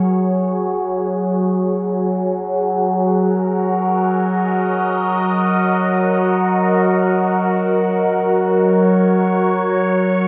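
Peaceful and luminous, this ambient fragment in free time rests on a single evolving wavetable pad heard alone for all 10.3 seconds, moving from an F#5 chord to D#m/F# at 2.5 seconds. The dark, detuned pad morphs and warbles with a vintage character, its slow attack and long release shaped by phaser, built-in reverb and tape echo. It sits up front in a dreamy mix soaked in lush hall reverb.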